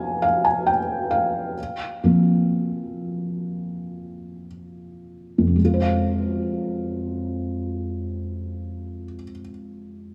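Emotional and melancholic, this short pop piece in F minor moves at a slow 54-69 BPM in straight 4/4, with a felt-muted upright piano playing alone and easing its tempo over the first 5.6 seconds. The thick felt gives the piano a dark, intimate tone with short sustain and audible action noise, placed up front yet wrapped in a moderate plate reverb. A rootless Dbmaj7 drifts to Bbsus2 before settling on F minor at 5.6 seconds, in this fragment cut from a longer piece.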